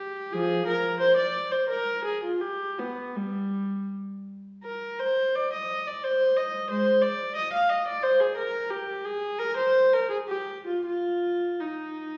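This is a classical, baroque-style suite movement for unaccompanied viola, cut from a longer piece, with a grave, solemn mood. It moves in 3/4 at roughly 78-93 BPM with a free, rubato feel, and settles into Eb major from 4.6 s. A single bowed viola plays throughout, from 0.0 to 12.2 s, ranging from F3 to F5. Its period-style, gut-string tone is reedy and sits up front. A generous recital-hall reverb from a church or concert hall, lasting about 1.4 seconds, surrounds the instrument with resonant, hall-like space.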